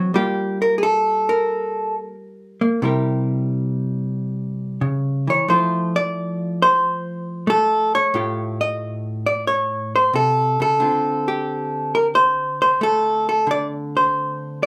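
A dark, clean, compressed hollow-body electric jazz guitar sits up front, picked alone across the whole 14.7-second cut from a longer smoky solo jazz piece, swinging at 90 BPM in D minor (tuned to A4 = 436 Hz) through Gm9, C7b9, Fmaj7 and A7alt, ringing in a moderate club reverb.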